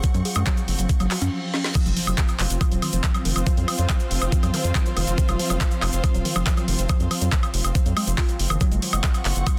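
This driving, psychedelic trance clip opens with most parts already in motion: an evolving, morphing wavetable pad holds sustained chords in the background with chorus and its own reverb, while a woody, wave-folded pluck plays a dark, percussive riff coloured by chorus, 12-bit sampler grit and digital delay. Underneath, an overdriven, knocking electronic kick sits up front beside a layered, overdriven kit of woody snare, bright hats, handclaps, woodblock and crash, and a grainy, close cabasa adds detail in the background. A round, deep analog bass enters almost at once, and a bowed studio string section supplies a focused, vibrato-rich texture with a smooth top, its level pumping with the kick like the pad and pluck. A very quiet reverse cymbal leads into a short break and drum fill, and the drop lands at 1.8 seconds with an electronic impact and zap. The sound is dense and heavily limited, set in a digital ambience.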